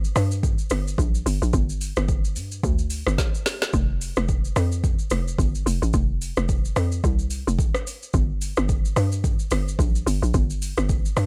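Amapiano with a soulful, hypnotic swing, built on an up-front hollow, bouncy FM log drum bass with a noisy edge and fast-attack, decaying notes, set against an overdriven electronic afro-pop drum kit of deep kick, woody snare, metallic hats, rim click and shaker that sounds re-recorded in a small room, with a drum fill at 3.2 seconds in this dry, short excerpt.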